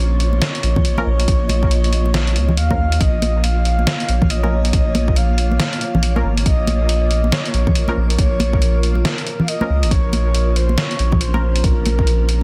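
A breathy, flute-like synth lead with lush chorus and dub echo floats over a cloudy, evolving granular pad and a thick, saturated sub bass up front from the start of this meditative, brooding deep dubstep excerpt, soon joined by a gritty, pitched-down sampler-style kit of hi-hat and snare, bright, damped congas in the background, a deep, tape-warm electronic kick from 0.8 seconds, and muted, detuned filtered dub chord stabs from 1.0 seconds, all riding a swung half-time feel under a dense, heavily limited master.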